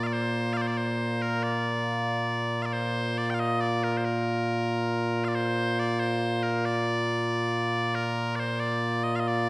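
A dark production sets solo bagpipes, bright and piercing, up front in a moderate stage reverb, with a slapback echo trailing the pipes. This stirring, ceremonial fragment of Scottish pipe music in a straight 6/8 is cut from a longer piece, and the continuous pipe tone carries through the full 9.5 seconds. The opening section is played through once and then heard again from 5.4 seconds.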